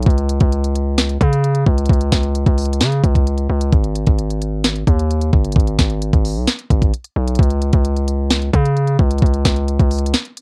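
This trap-flavored hip hop piece moves at 131 BPM with a half-time feel in G# harmonic minor, carrying a menacing, melancholic mood. A distorted 808-style bass sits up front, its heavy, saturated sine tone layered with noise, striking with a fast attack before decaying, and roaming from G1 to C#3. The trap drum kit is electronic and equally forward, pairing a knocking kick and sharp snare with crisp hi-hats, all colored by a cassette tape character. The sound is dry, like a home cassette recording. The bass drops out at 10.1 seconds, leaving the drums alone briefly before this excerpt ends at 10.4 seconds.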